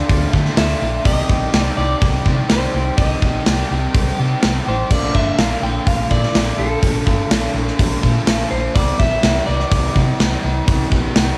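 Shoegaze and dream pop rock, this short, hazy and wistful passage moves at 125 BPM in a straight 4/4, cut from a longer piece. A gated 80s drum kit sits up front, its punchy kick, medium-tuned snare, hi-hat and crash cymbal ringing in a bright stone room with a gated tail and a cassette-tape grit. Beneath it, a hollow-body short-scale electric bass, fingered and amped, gives a dark, round low end from 0.1 s to 11.3 s. A crunchy overdriven guitar plays a double-tracked, picked riff with a subtle chorus, while a twangy, slightly broken-up lead guitar through a small old amp carries the melody with analog delay and a cassette-tape coloring. The chords pass from Dm to Cm, Bbmaj7 and Cadd9, all captured as a home cassette recording in a moderate small room.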